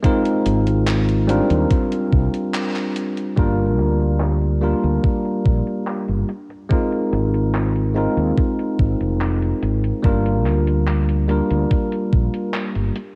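A bright, bell-like electric piano with lush chorus and analog delay carries this melancholic, woozy vaporwave fragment over a round, dark fretless bass entering at 0.5 s, a thumpy, overdriven electronic kick up front, and a gated 80s digital drum machine of handclaps, hi-hat and crash cymbal sitting low in the mix, with a band accent at 2.5 s, a filter sweep on the drums from 3.4 s, and the worn, warbling pitch drift of old cassette tape over light digital ambience.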